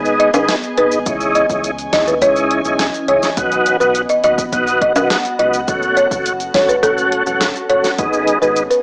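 A woody, rustic folk marimba carries the melody with tape echo, riding over an up-front tonewheel organ whose slow rotary speaker, chorus vibrato and sidechain pumping give this tough, hypnotic dancehall excerpt in C# minor its sway at 104 BPM. A glassy, ethereal FM pad sustains chords through ensemble chorus and reverb, while a round analog bass sits dark in the background beneath a punchy deep house drum kit of kick, deep snare, rim click and hi-hat, with bright, close maracas and timbales. The chords move from G#m through C#madd9, B and F#m, and the whole mix has a dry, gritty sound, like a cassette played through a small speaker.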